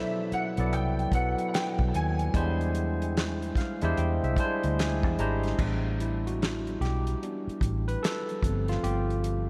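R&B with a neo-soul lean, this soulful, smooth excerpt from a longer piece moves at an unhurried pace with a swung sixteenth-note feel, passing through Cmaj9, E7alt, A9sus4 and G9sus4. A clear concert grand piano with long sustain carries a brief melody in its upper register, colored by ensemble chorus and delay, and drops out at 2.7 seconds. A barky tine electric piano, bright and clean through a combo amp with a subtle chorus, sits up front as accompaniment, adds a fill from 3.2 seconds and takes a solo from 5.6 seconds. Beneath it, a vintage foam-muted fingered electric bass gives round, punchy, amped low notes, while a dark acoustic soul drum kit with a fat snare, tight kick, hi-hat and crash cymbal comes in just after the start with a rolled-off top. The whole mix is soaked in a long cathedral reverb that gives it a dreamy glow.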